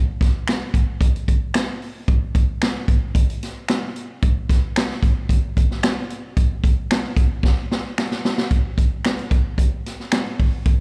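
A swinging big-band drum kit sets an uplifting soul groove at 112 BPM, its boomy kick, medium-tuned snare and hi-hat sitting up front, while close, dry finger snaps join in the background at 0.5 s, a drum fill at 7.4 s leads into a new section, and the whole short cut carries the light club reverb of a live gig heard through the venue's PA.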